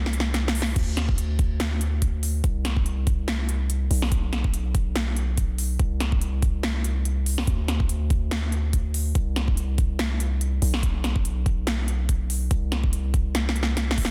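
A dry, dense, heavily limited sound carries this dreamy, emotional future bass excerpt at 143 BPM in a swung half-time feel, where a deep, sine-toned 808-style bass with sidechain pumping sits up front from the start, a layered dance kit of crash, crisp hats and punchy snare re-recorded in a large room fills at 0.0 and 13.3 seconds, and a knocking, tape-warm electronic kick enters at 0.8 seconds.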